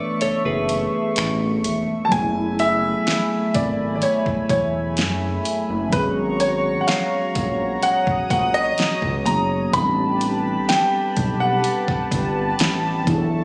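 This moody, sensual slice of contemporary R&B opens with a mellow tine electric piano colored by phaser, a shimmering, detuned pulse-width pad that pumps against a sidechain, and a brief clean, direct-recorded electric guitar arpeggio trailed by delay that stops at 1.8 seconds. A smooth synth bass with gentle vibrato settles in underneath almost at once, alongside an up-front electronic drum kit of finger snaps, metallic hi-hats and a fat snare, all roughened by vintage 12-bit sampler grit. The knocking kick stays muted until 2.1 seconds, when the groove fills out and the harmony moves through a chain of minor eleventh chords. From 2.0 seconds a clear, intimate baby grand piano carries the melody up front, its action noise audible and its notes echoed by delay. Light digital reverb and the faint air of a phone capture in the room give this short cut from a longer piece a close, sensual feel.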